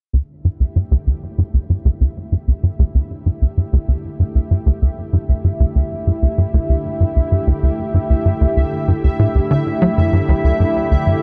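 A straight 96 BPM pulse in 4/4 drives this ambient, sequencer-driven space music: a tight, punchy sawtooth and square-wave bass riff sits up front with gritty 12-bit sampler character, ensemble chorus and delay, while a filter sweep runs across it from 0.1 to 11.2 seconds. Behind it, a thick, warbling unison pad holds sustained Dsus4 chords and fades in, joined by a faint, tempo-synced triangle texture pulsing high on E5 that also fades in. The dark, warm mix is bathed in a huge ambient reverb, giving this expansive, cosmic excerpt a vast, floating depth.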